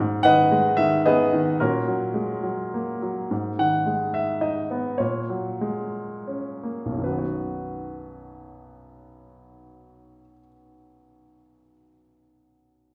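In a rubato triple metre that slows between 3.3 and 7.0 seconds, this hopeful, relaxed excerpt of lyrical classical solo piano sets a natural, up-front baby grand with short sustain, ranging from B1 to F#5, inside a wet church or concert-hall reverb as the harmony moves between G#m and F#add9/A# before settling on B.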